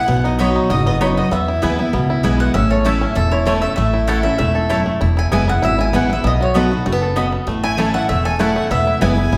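This lively, rustic bluegrass excerpt opens with a mellow, round picked mandolin carrying the melody, alongside a bright, full-bodied steel-string guitar in accompaniment and a twangy fingerpicked banjo playing arpeggios. A clear, focused fiddle with light vibrato adds a bowed second line in the background, dropping out at 2.2 seconds and returning at 7.6 seconds. An upright bass enters almost at once, its woody, thumpy gut-string pizzicato sitting up front, while a second mandolin tucks short stabs into the background. The band drives along at a brisk 195 BPM in a straight 4/4, moving through B, E and A chords. A generous large-studio reverb places the players further back in the room.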